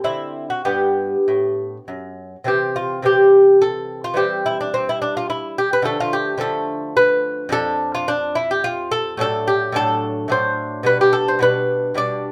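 Classical music in the manner of a baroque dance, this short passage from a longer piece is played by a solo lute in a lilting triple metre with a relaxed, rubato feel. The mood is radiant and serene. The fingerpicked lute sits up front with a warm, delicate tone, its gut double courses and some octave-doubled strings lending a shimmering fullness across a range from F2 up to D5. The harmony opens on D9 and G, then moves through C, C/E, Dm and Dm/F before turning at 9.2 s to D7/A and settling on G/B as the music shifts toward G. The playing was captured live in a single room, with light reverb giving the instrument an intimate, natural air.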